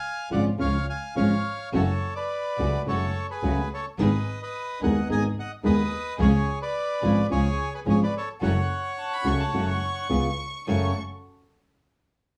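This cut from a longer tango has a small-room sound with a moderate touch of reverb, and its mood is sultry and dramatic at a rubato 107 BPM in 4/4, in F# harmonic minor. A reedy, dark bandoneon carries the melody up front from the very start, while a thumb-plucked acoustic flamenco guitar sits equally forward, supplying the accompaniment over chords that move through F#m, G#m and C# before a C#7 turns back home. Beneath them, a bowed double bass played by one player sounds clear, biting and earthy with light vibrato, though it feels distant in the mix. A dark studio string section adds bowed stabs in the background, their vibrato and portamento giving an expressive edge. Near the close, at 9.0 seconds, a single bowed violin enters as a second line high above, soft in attack and sweetened with vibrato and portamento.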